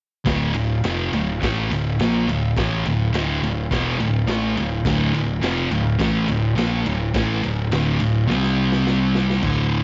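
An up-front, double-tracked fuzz guitar drives a raw, menacing garage rock riff over a growling, overdriven picked electric bass and a crunchy, saturated breakbeat kit with dark cymbals, a tight kick and a rolled-off top, set in a small room and capped by a drum fill at 8.3 seconds in this brief cut from a longer piece.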